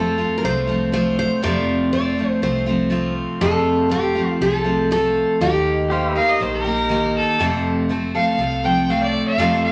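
A straight 4/4 pulse at 121 BPM drives this sunny, down-home excerpt of honky-tonk and classic country in F mixolydian, moving from F to Eb and back. Two picked dreadnought acoustic guitars sit up front, one carrying the melody and the other picking the accompaniment; one sounds bright with fresh strings, while the other is full-bodied with audible finger squeak. In the background, a clean, twangy, compressed pedal steel played with fingerpicks adds sustained slide chords and volume swells, while a dark, round, foam-muted vintage electric bass anchors the low end. An earthy, biting fiddle with light vibrato enters at 6.2 seconds and takes a solo from 7.4 seconds. The parts share a roomy, large-studio reverb.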